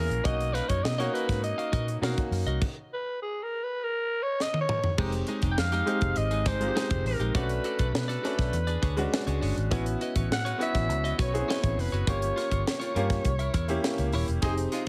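A growling, raspy alto saxophone leads this breezy, urban excerpt of polished 1980s jazz-funk pop at 102 BPM, soloing with echoing delay over a tight funk drum kit with gated reverb, a round, punchy muted electric bass, a bright concert grand piano and a dark, clean electric guitar riff, both touched with subtle chorus, as chords move from Bmaj7 through Fm9 to C7b9 and a mellow horn section slips in at 14.4 seconds.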